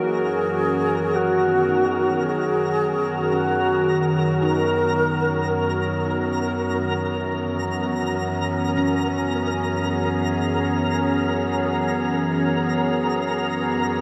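A vast, drenched reverb hangs over this serene, luminous ambient passage in 3/4, cut from a longer piece and moving with a straight, unhurried feel. Up front, an evolving wavetable pad holds sustained chords, its detuned, warbling vintage tone morphing under chorus as the harmony shifts from Bmaj7/F# to C#m7/F# at 6.6 seconds. A distant alto flute with a wooden head carries the melody with a pure, expressive vibrato and tape echo before falling silent at 6.0 seconds. Beneath it, a very quiet handpan rings out soft, meditative arpeggios with a close, dry stainless-steel tone until 12.4 seconds, while a reedy, breathing pedal harmonium sustains a dark drone in the background. A twinkling granular texture fades in across the whole passage, adding sparkling, octave-up FM shimmer.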